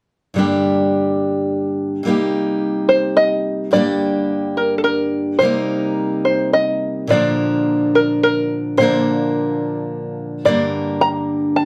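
Haunting and wistful, this acoustic folk excerpt moves in an unhurried three-beat lilt, opening at 0.3 s with a picked steel-string acoustic guitar laying down a warm, up-front accompaniment. At 2.9 s an open-back banjo takes the melody, its fingerpicked line mellow yet twangy and plunky, with a percussive bite. A modest small-room reverb keeps the duo close and intimate.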